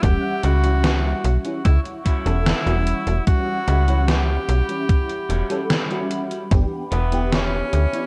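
Woozy and nostalgic, this vaporwave excerpt at 74 BPM in E dorian sets an edgy tenor saxophone melody with light vibrato and tape echo over a lush FM electric piano with phaser and ensemble chorus, a warbling, detuned pad sitting dark in the background, a snappy slap-like FM bass up front, a thumpy electronic kick and a gated 80s drum machine whose hi-hat and gated-reverb snare carry 12-bit sampler grit, while a clean semi-hollow guitar riff with subtle chorus and analog delay enters at 0.4 s, the harmony moving from Em69 to G6 at 6.5 s.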